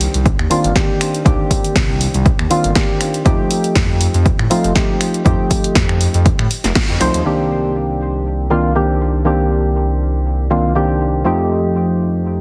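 A swung 4/4 groove at 120 BPM drives this moody deep house excerpt in C dorian: a tape-warm analog drum machine with low-passed hi-hats, snare, finger snaps and crash cymbal plays from the start, joined at 0.3 s by a punchy, up-front electronic kick, and both drop away by 7.4 s after a band accent at 6.8 s. Underneath, a smooth, detuned sawtooth synth bass pumps with sidechain compression, while hollow, percussive organ stabs sit up front over Cm9 and F9 chords, coloured by chorus, tape echo, sidechain pumping and gritty 12-bit sampler texture. The mix carries light reverb and a heavily compressed, radio-like sound.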